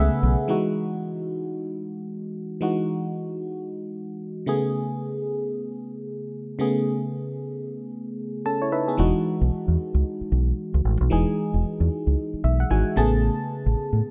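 A swung new jack swing groove at 113 BPM in 4/4 sets an upbeat, flirty R&B mood in E major, moving between Emaj9 and Amaj9 chords in this short excerpt from a longer piece. A glassy, bell-like FM electric piano with a chorus effect carries the accompaniment up front throughout, adding fills at 8.2 seconds and again at 12.2 seconds. A deep, dark, punchy fingered electric bass touches in at the very start and then returns at 9.0 seconds with a round, amped presence, all set in a light reverb.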